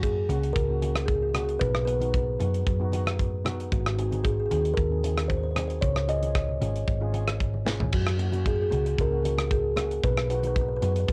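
A straight 4/4 calypso groove at 114 BPM in F# major sets a sunny, bouncy mood: a woody, ringing, thumb-plucked kalimba carries the melody, shimmering cello steel pans struck with medium rubber sticks give close-miked, dry accompaniment, a round, punchy hollow-body short-scale electric bass sits up front, a tight metal drum kit with bright cymbals, both it and the kalimba colored by cassette tape, plays a fill at 7.4 s, and very quiet, damped, low-tuned congas enter at 0.3 s, the whole cut from a longer piece and set in light reverb as a home cassette recording.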